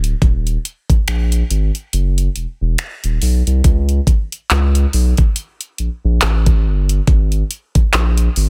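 Contemporary R&B with a late-night, sensual mood, moving at a slow 70 BPM in 4/4 with a light swing on the sixteenths. A saturated sub bass sits up front throughout, its deep, thick sine tone landing with a fast attack and sustained notes that range from D1 to C#2. An electronic, produced R&B drum kit plays across the whole cut, combining finger snaps, handclaps, metallic hats and a knocking kick, with soft clipping on the snare and a small-room character to the kit. The kick drops out between 1.9 and 3.6 seconds before returning. The sound is dry and close, with little reverb, and the master is dense and heavily limited in a modern style, in this short cut from a longer piece.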